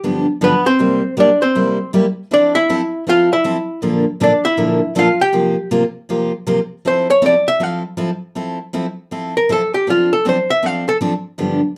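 A short, wet studio reverb gives this brief country cut from a longer piece a polished sheen, with both guitars sitting up front. The mood is swinging and cheerful, its eighth notes carrying a loose, lilting shuffle in 4/4. A miked and amplified hollow-body archtop guitar takes the melody from the first moment, its tone dark and clean as it plays a picked jazz-flavoured solo through two passes of the same section, the second beginning at 8.4 seconds. Beneath it, a picked steel-string dreadnought acoustic guitar supplies the accompaniment, sounding bright and full-bodied with fresh strings. The harmony moves through dominant sevenths and major sevenths such as G7, C7 and Bbmaj7, settling on Dm7/F near the close, where the archtop stops at 11.0 seconds and the acoustic carries on briefly to 11.6 seconds.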